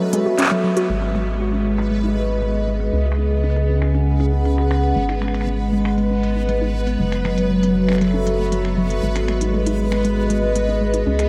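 IDM excerpt at 118 BPM in G# phrygian, cerebral and intricate, where a warbling, nostalgic tape-like pad holds sustained chords up front alongside a reversed, swelling, granular texture and dusty, lo-fi pluck arpeggios in the background, while an organic electronic drum kit of finger snaps, handclaps and crisp hats carries a filter sweep from 0.9 s, the moment a rubbery, hollow square bass enters, all soaked in a huge, dreamy reverb over chords moving from F#m7 to G#m, C#sus4 and back.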